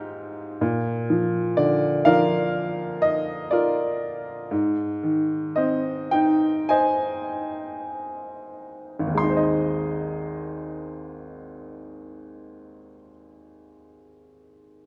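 A bright, woody upright piano sits up front in a moderate concert hall reverb, giving the recording a vintage character with a smooth, brilliant top. This is a lyrical classical solo piano passage in Ab lydian, tender and peaceful, taken from a longer piece and running to 14.9 seconds. The pulse sits between 45 and 62 BPM in 4/4 with a free, rubato feel, and the opening phrase from 0.6 seconds gradually slows down. The harmony rests on Ab, moves to Bb, then settles back to Ab. A second section begins at 9.2 seconds, and the piano spans a broad register from deep Ab1 bass notes up to C6.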